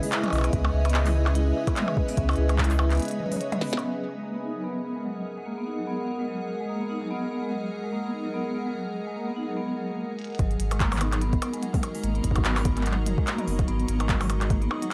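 Swung sixteenths in 4/4 drive this intricate, cerebral IDM piece, where an overdriven glitchy drum kit of clicky hats, a tiny snare, toms, crash cymbal, handclaps and percussion blips is joined by a deep, round sine sub bass and a soft, overdriven electronic kick, until a break and a drum fill give way to an icy, crystalline glass pad and a metallic, ringing vibraphone with fast motor vibrato, which carry a filter sweep on the vibraphone from 3.8 to 10.4 seconds, after which the groove returns, all captured on gritty cassette with lossy compression artefacts.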